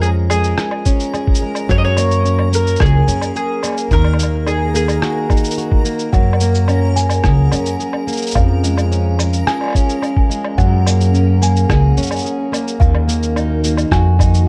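This hopeful folktronica excerpt opens on a round, picked mandolin melody carrying vintage sampler grit, delay and plate reverb, over a full-bodied fingerpicked jumbo acoustic guitar playing arpeggios. Underneath, a woody, growly pizzicato upright bass sits up front with tube saturation, while a muffled, pitched-down electronic cabasa, woodblock and rim click sketch a compressed pulse. A reversed, swelling granular texture glimmers brightly in the background, and a thumpy, tape-warm electronic kick soon lands up front in a steady straight feel. The mandolin falls away at 5.8 s, and at 6.1 s a delicate, tinkling music box, slightly out of tune, takes up a second line through digital delay. From 7.0 s a warbling, nostalgic lo-fi pad of detuned square and triangle tones with ring modulation and chorus fades in behind the chords, deepening the dark, warm production as the harmony circles around F#add9 and D#m.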